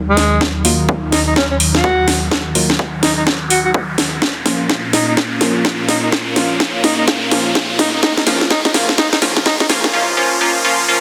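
A detuned sawtooth pad with sidechain pumping and chorus opens this gritty, swaggering bass house build-up in Eb minor at 126 BPM with a swung 16th feel, moving from Ebmadd9 to Bbm at 4.2 seconds as an electronic riser and swell runs through, a clear, classical-style alto saxophone solo drifts through dub echo, an up-front house kit of cracking snare and metallic hi-hats plays a drum fill over a punchy, tape-toned kick sitting in the background, and a bright, nasal band-passed chord stab with dub echo undergoes a filter sweep until 11.0 seconds, all inside a moderate digital room and a dense, heavily limited master.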